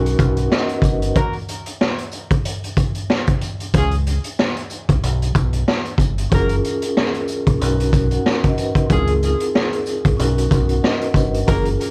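Mellow soft-mallet vibraphone and a round, dark fingered electric bass open this nostalgic boom-bap hip-hop excerpt at 93 BPM with a swung 16th-note feel, joined at once by a gritty, saturated small-room drum kit with a punchy kick and a faint jingly tambourine. A warm pop-style horn section with tape echo adds stabs from 1.1 seconds, while the vibraphone drops out for a break at 1.2 seconds and returns at 6.3 seconds over chords such as Gbmaj7 and Dbmaj7, the mix wrapped in worn, warbling cassette-tape drift and light reverb.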